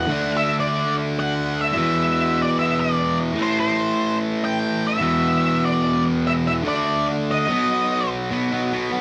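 Captured live in one room with light reverb, this gritty, swaggering rock fragment puts a bright, compressed, double-tracked fuzz guitar up front, picking a distorted riff in straight 4/4 from the low E2 up to D4 until 9.0 seconds. Over it, a darker octave-fuzz lead guitar picks a melody between C5 and G5 until 8.1 seconds, while the chords move through D, E5, Am, E5, D5 and B5.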